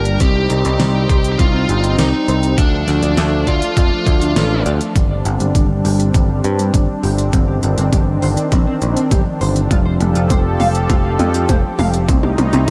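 A cut from a longer synthwave piece, the recording sits in light digital ambience with faint lossy artefacts, and its mood is cinematic and nostalgic at a straight 101 BPM in 4/4, in C dorian. An overdriven, thumpy electronic kick sits up front beside a growly picked electric bass with tube saturation. A layered, produced pop kit adds a fat snare, crisp hats and toms. A smooth, detuned sawtooth analog pad holds soft-attack chords with chorus, tremolo and sidechain pumping. A bluesy distorted lead guitar states a short melody through diffuse ambient delay until 4.6 seconds, while a dark, slightly broken-up guitar riff lingers in the background with analog chorus, low-pass filtering and tape echo. From 5.0 seconds a drum fill runs and a filter sweep shapes a clean electric guitar, as the harmony moves from Cm and Dm through Gsus4, Cmadd9/G and F6 to Cmadd9.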